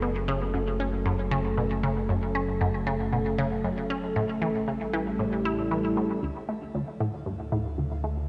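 Expansive and cosmic, this short excerpt of sequencer-driven ambient space music sets a juicy, squelchy blip pluck riff, bright and up front with phaser, delay and shimmer reverb, over a sweeping, resonant sawtooth pad holding sustained chords that move from F#m to A7 and on to Dm. Beneath them a mellow, warbling analog drone anchors the bass with vintage pulse-width character and tube saturation, while at 6.8 seconds a faint, pulsing gated texture drifts in far in the background. From 6.2 seconds a filter sweep passes over the arpeggiated synth, all set in a moderate concert-hall reverb with a softened top end.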